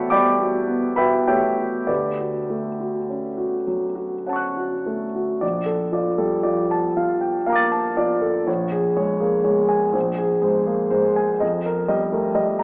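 Serene and dreamy, this slow, rubato impressionist solo piano fragment in 6/8 at 32-42 BPM features an up-front concert grand with deep bass and a natural, warm tone, drifting through Em11 and Dmaj7 in D major before shifting to Bb major at 5.4 s for lush Bbmaj7, Bbm7 and F11 colors, all bathed in a wet recital hall reverb and a worn, warbling cassette-tape haze with AM radio character.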